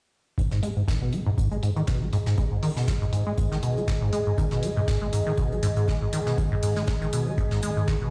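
This trippy, gritty acid house excerpt opens at 0.4 seconds with a squelchy, resonant sawtooth acid bass riff up front, carrying a filter sweep, tube saturation, lush chorus, cassette tape grit, delay and sidechain pumping. Beneath it sit a deep, tape-toned electronic kick, faint brushed acoustic snare and hi-hat, and a moody, nasal, detuned analog pad holding dark sustained chords with chorus and pumping. Metallic electronic hats follow, and from 1.7 seconds a blurred, mellow granular cloud pad drifts in the background, all within a stone room's echo as if played on a big sound system.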